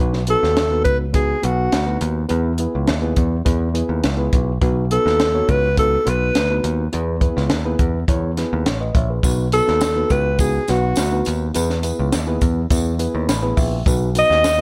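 A light reverb sets this short cut from a longer piece, with a compact cocktail drum kit and the saxophone placed up front. It is uptempo 1960s-style soul at 104 BPM in 4/4 with a straight feel, and its mood is warm and danceable as the harmony sways between B and E in B mixolydian. A breathy alto saxophone carries the melody from 0.3 seconds, close-miked and whispered, with subtone, vibrato, soft attacks and scooped notes in a jazz-style solo voice. Underneath, a reedy, mellow electric piano heard through its built-in speakers keeps up the accompaniment and adds a fill at 13.0 seconds, while a picked electric bass sounds direct and punchy. The small-room drum kit is dark and smooth, with a high-tuned snare, tight kick, hi-hat and a rolled-off top. A jingly, close and dry tambourine joins at 9.2 seconds for the final bars.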